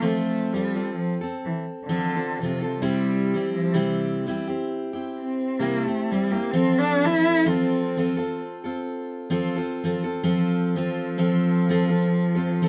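A bowed cello carries this intimate, haunting acoustic folk excerpt, taking a solo from the start through 10.2 seconds with expressive vibrato, a soft attack and gliding portamento between notes. A picked steel-string acoustic guitar with a jumbo body and fresh strings accompanies throughout, its full-bodied tone sitting up front beside the cello. The tempo is slow, at 65 BPM in 4/4, with a gentle swing on the eighth notes. The harmony moves from F to C and back to F, and a new section begins at 10.2 seconds. A light reverb gives the duo a close, warm sense of space.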